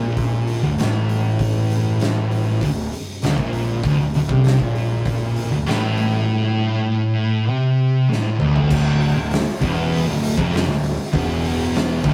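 A rough rehearsal-room recording in a stone room captures a sludgy, heavy stoner and doom metal passage, where an up-front distorted fuzz guitar and a second one further back grind out a riff over a warm, overdriven picked bass and an oversized low-tuned acoustic drum kit with a boomy kick, fat snare, gritty saturation and dark cymbals, whose fill at 8.1 s carries the riff from a D5 power chord into a D minor chord at 8.7 s.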